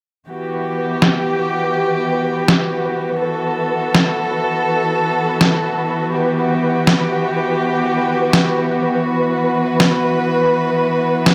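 A gritty, overdriven electronic snare drum sits up front, its compressed, pitched-down hit given a low-pass filter and studio reverb as it comes in at 1.0 s in this heavy, spacious half-time drum and bass excerpt at 164 BPM in E minor. Alongside it, a muted chamber string section, bowed con sordino with vibrato and a soft attack, holds sustained chords from 0.3 s, spanning E3 to B4 on a dark, veiled Emadd9. A pulsing, tempo-synced gated texture built from detuned triangle tones in unison enters at 0.6 s on B4, sitting in the background with a slow attack, long release, chorus and its own reverb. The groove swings its sixteenths slightly within the half-time feel, and a moderate echo chamber reverb with a 1.8 s decay lends the close, up-front strings and snare a sense of depth.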